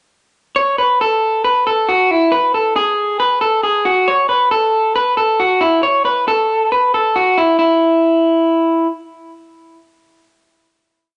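A moderate, large-studio reverb with a digital ambience surrounds this lo-fi, rolled-off recording, a complete indie pop piece in a straight 4/4 with a nostalgic, breezy mood. A lone electric guitar through a small old amp sits up front, slightly broken-up and compressed, playing a ringing picked figure between E4 and C#5 from 0.6 seconds. The verse gives way at 7.6 seconds to a final note, with the guitar stopping at 8.9 seconds and the piece closing at 11.1 seconds.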